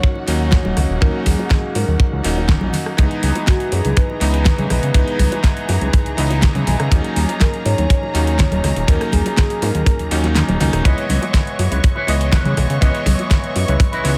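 A tight, up-front kick drives this cosmic, sleek nu-disco excerpt at 122 BPM in C# dorian, joined by a fat, detuned sawtooth analog bass and a produced pop drum kit with a fat snare and metallic hats, while bongos and congas sit close and dry in the background. A round, sub-octave synth lead with chorus, phaser and delay carries the melody until 10.3 seconds, over a clangy vintage electric grand piano with tape echo and a dark, woody violin section holding sustained chords, both pumping against the kick. The kick drops out briefly at 10.4 seconds, and a twangy, clean envelope-filtered electric guitar riff with lush chorus arrives at 10.8 seconds as the chords move between D#m7 and C#m7.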